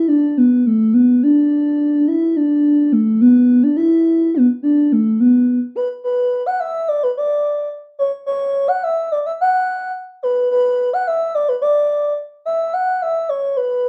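Earthy and melancholic, this Andean folk passage in B minor moves in a straight 2/4 at about 107 BPM and gradually speeds up, as a single pure, breathy sine lead with a gliding, mellow tone, soft attack, sustained notes, vibrato and chorus carries the melody alone from 0.0 to 13.9 seconds, shifting to a new section at 5.8 seconds, set in a small, reverberant room that places the listener further back.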